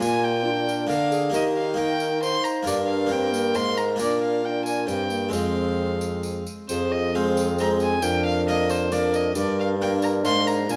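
From the first beat, an up-front, nasal gut-string violin carries the melody of this solemn, courtly renaissance-style consort dance in 3/4 at 135 BPM in F dorian, joined by a hollow, chiffy tenor recorder on a second line, a bright, dry, plucked harpsichord and a warm trombone with light vibrato in accompaniment, a classical-style bassoon holding the bass and a soft, jingly tambourine, set in a moderate stone room.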